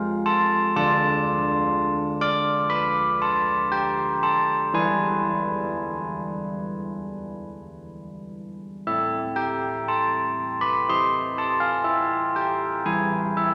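A long cathedral reverb, about 5.0 seconds of decay, surrounds this recording and lets every stroke hang in the air. It is a solemn, wintry classical tune for church bells in A minor, set at a slow 60 BPM in a straight 4/4, and cut from a longer piece. A carillon plays alone throughout the 13.5 seconds, its bronze tone ringing up front, spanning D3 to D6, with the bite of an iron clapper and a minor-third overtone coloring each note. The harmony moves from F to D minor, settling on E at 4.7 seconds, before a second phrase opens on A minor at 8.9 seconds. The passage closes on a bare E5 chord at 12.9 seconds.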